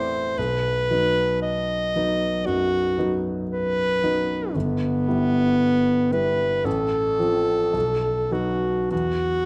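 Melancholic and yearning, this short passage cut from a longer romantic classical piece pairs a close-miked alto saxophone, carrying the melody up front in a clear classical style, with a grand piano accompaniment, the duo moving freely in rubato. The piano sounds intimate and polished, with its action noise audible, as it travels through chords such as B, Em/G, F/A and B7 before the chord progression ends at 8.9 seconds. A moderate recital-hall reverb surrounds the duo, which plays together from 0.0 to 9.5 seconds.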